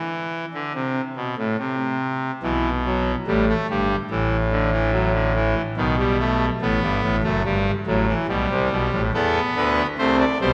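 A pipe organ on a brassy, bright trumpet stop sounds first, alone and up front, opening a serious, driving baroque-style fugue in four parts. The piece sits in A minor at 72 BPM in a straight 4/4, and this short excerpt is cut from a longer work, running just 10.5 seconds. The organ spans a range from F#1 to D5 with a baroque voicing, its bright tone ringing into a wet concert hall reverb with a 2.3-second decay. The harmony begins on a chordless passage before moving through Em/B, Asus4, B7(no3) and a rootless Em/G. It arrives on A minor at 9.1 seconds, giving the passage a firm sense of arrival within its brief span.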